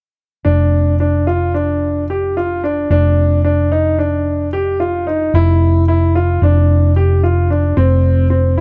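This brief progressive instrumental, cut from a longer piece, moves in a driving 9/8 with a straight feel, its asymmetrical pulse giving the music an intricate, restless energy. A concert grand piano enters at 0.4 seconds with arpeggios between C4 and G4, its tone intimate and boxy with long sustain, deep bass and audible action noise, sitting up front in the mix. Just after, at 0.5 seconds, a hollow-body short-scale fingered electric bass joins on a low F1, dark, round and punchy with an amped edge, also placed close and prominent. The harmony shifts over that bass from Dm/F to Ebmaj7(no3)/F, passes through a chordless stretch, then returns with Dmadd11/F before turning chordless again. Both parts play through to 8.6 seconds inside a small room with light reverb, and the overall sound is soft at the very top, giving the pairing a snug, close-up character.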